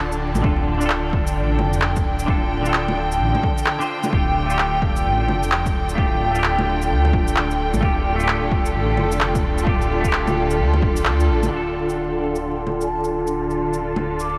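A ghostly, wistful future garage fragment in D minor at 130 BPM with a swung 4/4 feel opens on a bright, clean semi-hollow electric guitar carrying 12-bit sampler grit and delay, warm bowed strings with vibrato held on a D minor chord, and a deep, rumbling detuned saw bass with tube saturation, all three pumping against the sidechain. Overdriven electronic shaker, bongos and handclaps join alongside a punchy, layered kick, which drops out at 10.9 seconds. At 12.8 seconds a mellow, hollow concert flute with delay drifts in softly in the background, and the whole dreamy mix is soaked in a huge reverb and vinyl crackle.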